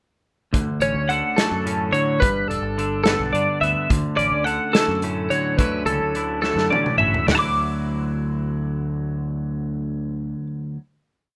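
A loose indie drum kit in a small room, a growling, overdriven fingered bass riff and a bright, twangy twelve-string electric guitar ostinato open this wistful, playful math rock and midwest emo piece together at 0.5 s, at 71 BPM in a 6/8 lilt in D major, joined at 0.8 s by a second compressed, chorus-tinged twelve-string playing syncopated fingerstyle arpeggios in a higher register, until a drum fill from 6.4 s leads into a held Dadd9 final chord, all in a rough home demo mix with light reverb.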